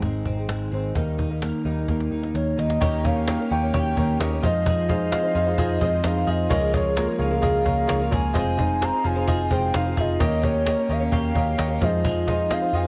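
Youthful and bright, this jangly indie pop excerpt opens with a shimmering, octave-doubled fingerpicked twelve-string acoustic guitar set in the background, twangy arpeggios from a clean twelve-string electric guitar, a round, foam-muted vintage bass and a snappy, close cajon, which plays a fill just before the second section begins at 2.8 seconds. A hollow, clarinet-like synth lead with chorus and vibrato carries the melody from 2.3 seconds, joined soon after by a brilliant upright piano with audible action noise, while a jingly tambourine enters at 10.2 seconds. The cassette-tape home recording carries light reverb and studio ambience over chords moving between Eb7, Fm7 and Db6.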